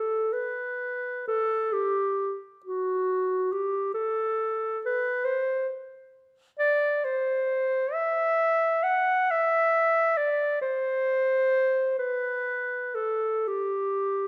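Classical in style, this brief passage for unaccompanied clarinet has a mournful, lonely character, taken from a longer piece. The pulse is slow, around 45 BPM counted in dotted quarters within a 6/8 metre, and the beats fall unevenly with free, expressive rubato. The warm clarinet is the only voice, placed up front and moving between F#4 and F#5 across the full 14.3 seconds. A moderate recital hall reverb, with a decay of about 1.4 s, surrounds the solo line with a sense of open space that deepens its solitary feel.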